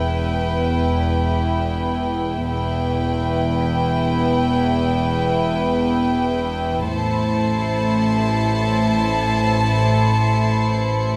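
This cinematic suspense-score excerpt moves in free time, ominous and tense, as a chamber violin section carries a soft, sul tasto melody high above a floating symphonic violin line, while dark chamber double basses and a rich cello section in the background hold the low end over Em moving to Am at 6.9 seconds. Alongside them, a vintage analog drone with chorus warbles and evolves on sawtooth and pulse-wave tones, and a very quiet, ringing thumb-plucked harp adds a high glint until 6.9 seconds, when a studio violin section in the background takes over the texture with a high, intimate shimmer. The strings are bowed with soft attacks inside a moderate scoring-stage reverb.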